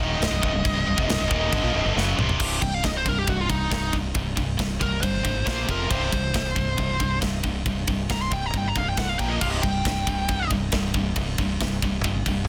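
Heavy metal in C minor at 137 BPM, this epic, heavy excerpt from a longer piece drives in a straight 4/4 feel. Two picked, distorted rhythm guitars sit in the background playing riffs between C2 and Bb3, one heavy with high gain and the other tight, while a growling fingered electric bass with overdrive holds down the low end from C1 to Bb1. The acoustic drum kit sits up front in an airy, big-room sound, with bright cymbals, a medium-tuned snare and a tight kick across crash, ride and toms. A drum fill at 2.0 seconds leads into a lead guitar solo from 2.4 seconds, where the harmony moves off the opening C minor chord into power chords on C, Bb and F. The lead guitar itself is up front, bright with high-gain distortion and delay as it ranges from Eb4 to C6 before stopping at 10.5 seconds, and the dense, heavily limited modern master carries light reverb.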